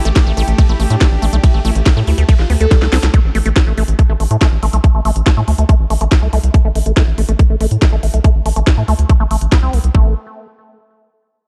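Dark, dry production carries this driving, intense psychedelic trance excerpt at 141 BPM in A minor, where a tight, up-front electronic kick and a round, deep analog bass anchor a drum kit of cracking snare, crisp hats and ride, while a squelchy, resonant acid bass riff runs alongside, a gritty, screaming overdriven lead and a swarming, detuned drone sit in the background until a drum fill from 2.7 seconds and a band accent at 3.0 seconds give way to long filter sweeps on both basses.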